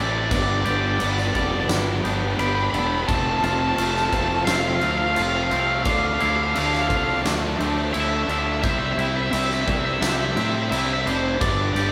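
A crunchy, overdriven lead guitar carries the melody in this euphoric, hopeful post-rock passage, cut from a longer piece, with a round, fuzzy fingered bass up front and a huge arena drum kit entering at 0.3 s with a fat snare, punchy kick and crash cymbal. Behind them, a tight distorted guitar plays a riff, a twangy clean guitar and a soft, bell-like glockenspiel played with rubber mallets pick out arpeggios, and a very quiet, lush string section holds sustained chords. The band sounds live in one room, bathed in wet studio reverb, as the harmony moves through G, F, Dmadd9 and Cadd9 before returning to G.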